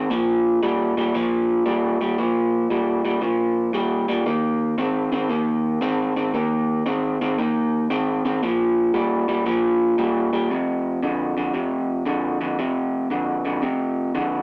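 A swung eighth-note feel in four drives this gritty, swaggering blues, cut from a longer piece. A lone electric guitar through a small old amp carries the whole passage from its first second, sitting up front in the mix with a bright, twangy, slightly broken-up edge. Its picked playing stays in a low-to-middle register, moving through Bb5, Eb5 and back to Bb5 before landing on F5 at 10.5 seconds. The tone has a lo-fi character, and a moderate studio reverb gives the playing a modest sense of room. The result is a lean, strutting snapshot of a blues progression.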